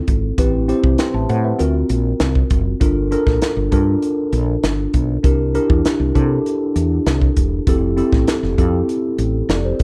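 Urban and slick, this short cut from a longer piece is polished 1980s jazz-funk pop at 99 BPM in a straight 4/4. A mellow tine electric piano carries the accompaniment from the start, its worn, slightly out-of-tune tone treated with analog chorus and sitting up front between C4 and C6. A woody fretless electric bass joins at 0.1 seconds with a dark, round, hollow-body sound that is direct and punchy, ranging from E1 to C3. The crisp fusion drum kit enters at the same moment with hi-hat, punchy kick and a high-tuned snare, its small, pumping room giving the acoustic kit a saturated, gritty edge. The harmony moves from Am7 through D7alt and Gm7 to C7, resolving onto Fmaj9 at 7.7 seconds, all framed by light reverb.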